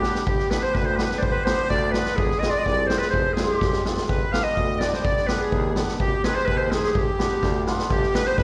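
A clear, soft-attacked clarinet leads this festive yet bittersweet klezmer excerpt in classical style, with a sweet, reedy accordion in the background carrying a second line through light tremolo tuning, a mellow hammered dulcimer shimmering and ringing beneath, a vintage tuba holding the bass with vibrato, and an up-front street-band drum kit with a boomy kick and rolled-off top adding fills at 0.0, 3.6 and 7.4 seconds, the live performance heard through a venue's PA in recital-hall reverb, with slapback echo on the clarinet, accordion and dulcimer.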